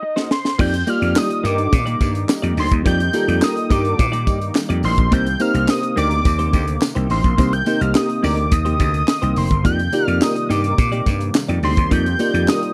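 A straight, danceable early-eighties boogie funk groove in 4/4 kicks off with a short drum fill on a tight, dry kit with a high-tuned snare, handclaps and bright cymbals, and at 0.6 seconds a growly, punchy slap bass and a jingly tambourine join it. From the very first moment, a fat, detuned sawtooth lead with vibrato and tape echo carries the melody over a picked, compressed clean guitar riff with analog chorus. Meanwhile a mellow tine electric piano, a round, brassy synth-brass second line and a lush, thick unison pad fill out chords that move from F13sus4 to Cm7 at 5.1 seconds and back, all in a close, late-night studio sound.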